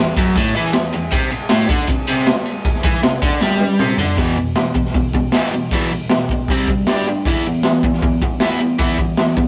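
A raw, gritty garage rock excerpt cut from a longer piece, where a double-tracked, overdriven electric guitar riff opens alone before a boomy, saturated drum kit with dark cymbals and a pumping small-room sound joins at 0.2 seconds, a drum fill at 3.4 seconds leads into a new section at 4.2 seconds, and both parts sit up front in a rough rehearsal-room recording.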